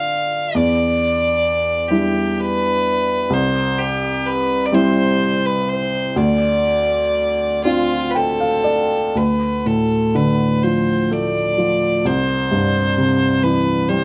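The recording is dry and open-air, captured outdoors with little reverb and both instruments placed up front. This is a Celtic slow air in D dorian, tuned to A4 = 444 Hz, moving in a rubato 6/8 at roughly 39-44 beats per minute and carrying a longing, mournful mood. A single bowed fiddle sings the melody with a clear, earthy tone, a light vibrato and a slightly distant quality. Beneath it, an upright piano gives woody, vintage accompaniment with a smooth touch and long sustain, moving through Dm, Em7, C and Dm7 before the phrase begins again at 9.2 seconds. The piano adds a brief fill from 7.6 seconds, bridging into the repeated section, and the piece is cut from a longer performance.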